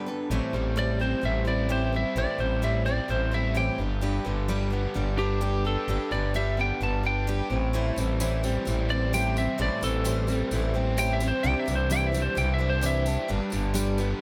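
Reflective and dusty, this folk rock and heartland rock excerpt in straight 4/4 pairs a full-bodied picked dreadnought acoustic guitar with a double-tracked overdriven electric riff steeped in spring reverb, while a growling, thick FM bass sits up front, a twangy, slightly broken-up lead guitar carries the solo melody through analog delay over a progression moving from Am7 through G to Cadd9, and a jingly tambourine enters at 8.0 seconds, all within a small room ambience.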